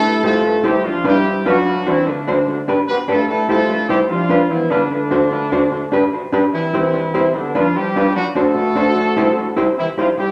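A straight 4/4 ska pulse at 148 BPM drives this short, energetic excerpt in A minor, tuned slightly flat to A4 = 436 Hz. A mellow horn section carries the melody from 0.0 seconds, playing as a punchy pop-style ensemble with vibrato and octave doubling, its tone thickened by tube saturation. At 0.2 seconds a dark, clean hollow-body electric jazz guitar enters with fingered accompaniment in a higher register, colored by tape echo. Both parts sit up front, while a wet large-room reverb gives the sense of a band playing live together in one studio. The harmony moves through seventh chords and color chords such as Am7, G7, D7, Dmadd11, Bdim and A9sus4 before returning to Am7, and the horns hold on until 10.3 seconds.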